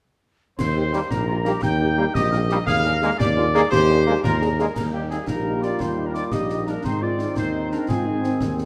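From 0.6 s a soft-attacked, distant trumpet section carries the melody over an up-front tuba bass and concert snare, clash cymbals and bass drum with dark cymbals, while a pure, wooden piccolo, a background woodwind section, a very quiet French horn section, bright trombone chords and, from 5.3 s, a smooth-topped euphonium fill out this proud, spirited 6/8 military-style march for wind band in moderate stage reverb, cut from a longer piece.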